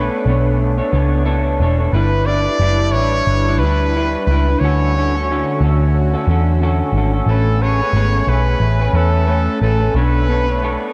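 A hazy, dreamy stretch of indie pop cut from a longer piece opens with everything at once: a clear trumpet sings a smooth-topped solo melody with vibrato, touched by subtle chorus and analog delay, over a slightly broken-up, lo-fi electric guitar played through a small old amp, compressed and bathed in lush chorus and a vibrato effect. Behind them a detuned sawtooth pad swirls with phaser and chorus, its slow attack and long release sustaining chords from Bm9 through G6, Dmaj7 and Amaj9. A dark, round, foam-muted electric bass sits up front, and a cathedral reverb soaks the whole mix in a dreamy haze.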